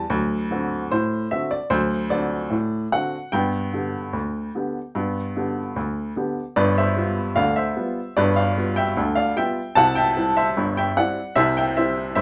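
Ragtime in a jaunty, lively 2/4 with a straight feel, this short excerpt features a solo upright piano ranging from G1 to A5 across its full 12.2 seconds. The piano sounds woody and intimate, with short sustain and audible action noise, and sits up front. A wet small-room reverb surrounds it, and the harmony shifts at 6.6 seconds from D7 and G to G7 and C.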